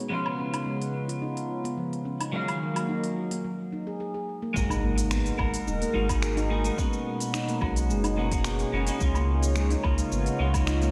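Ringing handpan arpeggios of nitrided steel drift through this mystical, hypnotic organic downtempo excerpt at 108 BPM in G# dorian, joined from the start by a bright, twangy clean electric guitar with lush chorus, delay and sidechain pumping and a smooth, detuned sawtooth analog pad; crisp hats, finger snaps, shaker and woodblock from an organic electronic kit enter at 0.3 seconds, and after a brief break a very quiet impact, a deep overdriven electronic kick and a round, up-front sine sub bass arrive at 4.6 seconds, the whole mix soaked in a dreamy hall reverb.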